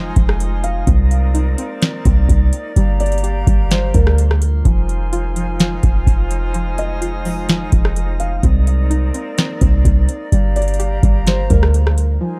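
A barely audible downlifter opens this hazy, spacious excerpt of atmospheric cloud-rap in F dorian at 127 BPM with a half-time feel, where a felt-muted upright piano carries a soft, boxy melody with tape echo in the background, an airy flute section holds vibrato chords under sidechain pumping, a twangy, string-like resonator pluck plays bright arpeggios with chorus and tape echo, and a drifting glass-harmonics texture adds glassy overtones, while a clean, sine-toned 808-style bass and a booming analog drum machine entering at 0.2 seconds, with deep kick, tonal snare, rim click and metallic hats, sit up front over chords moving from Fm7 through Cm9 and Gm7 in a dark digital ambience.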